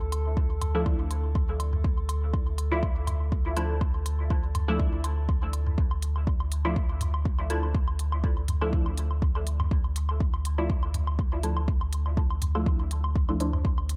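An echo-heavy, lightly reverberant mix sets this hazy, hypnotic dub techno fragment in D minor at 122 BPM with a gentle swing, where a round sine sub bass and a deep, up-front kick anchor smooth hats and dry, tape-warm woodblock and toms thrown into dub echo, while a muted, detuned sawtooth chord stab treated with chorus, phaser and cassette grit pulses against the sidechain and takes a filter sweep from 5.8 seconds, just as the glassy, drifting overtones of a bright harmonic texture come to an end.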